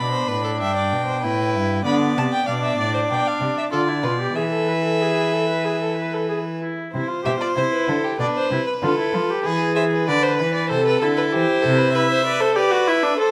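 A reedy, gut-string first violin carries the melody with light vibrato in this contemplative yet driving baroque-style fugue for string quartet, cut from a longer piece and moving at 96 BPM in 4/4. A close, nasal second violin weaves a second line beneath it, a distant, rich viola supplies the accompaniment and sits slightly forward in level, and a period-style cello holds the bass up front until it stops at 11.9 s. The quartet sounds in a moderate recital hall reverb, its harmony turning through Bm7b5 and E before settling on Em.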